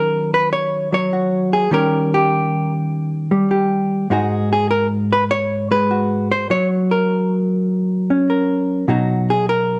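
A swung 4/4 at 100 BPM carries this cool, late-night solo jazz excerpt in Eb minor, cut from a longer piece. A lone hollow-body electric guitar sits up front, its dark, clean, fingered tone compressed as it moves from Ebm7 through Eb7, Abm7 and Gb before landing on B, spanning Ab2 to Db5. A moderate large-studio reverb gives the 9.8-second passage a soft sense of space.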